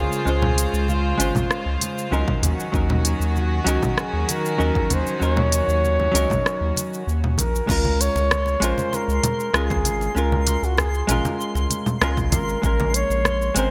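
This sunset chillout piece, cut from a longer work, has a blissful, warm mood over a straight four-beat groove. A dark, breathy flugelhorn carries the melody with scooped notes and a whispered, intimate tone, trailed by a delay. Beneath it, a clean, fingered hollow-body jazz guitar gives compressed accompaniment, while a round, deep analog bass sits up front with a sustained, sine-like weight. Smooth hats and other electronic drums from a layered deep house kit drive the rhythm with a punchy electronic kick and very quiet, low-tuned congas played with soft hands. A clear, floating string section holds bowed chords until 7.7 seconds, and the kick briefly drops away just before then. From 8.4 seconds a twinkling granular texture adds sparkling octave-up shimmer, all within a bright 1980s-style digital production bathed in moderate plate reverb.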